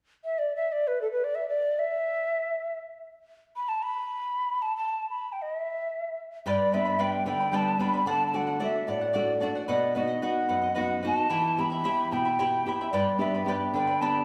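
In 6/8, this wistful, earthy Andean folk excerpt opens with an airy, hollow cane quena playing the melody alone from 0.2 seconds with vibrato and tongued notes, until a bright, shimmering fingerpicked charango with double strings and a deep, warm fingerpicked nylon-string guitar join at 6.5 seconds under a G, D, B, Em, G progression, all up front in the lingering reverb of a recital hall.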